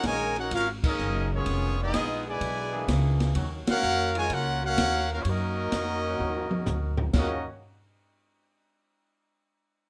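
Big band swing in Eb minor at 127 BPM, this brassy, swinging excerpt puts a clear trumpet section up front on the melody, while a bucket-muted trombone section adds a veiled, distant second line with light vibrato and a smooth-topped clear trombone section holds sustained chords in the background. A woody, thumpy pizzicato upright bass on gut strings sits up front beside a dark, punchy acoustic drum kit with dark cymbals. The band hits accents at 0.8 and 3.6 seconds over chords moving from Gb69 through E7#11 to Ebm9, and a drum fill from 6.2 seconds leads into an Ebm11 at 7.1 seconds, all in a moderate club reverb.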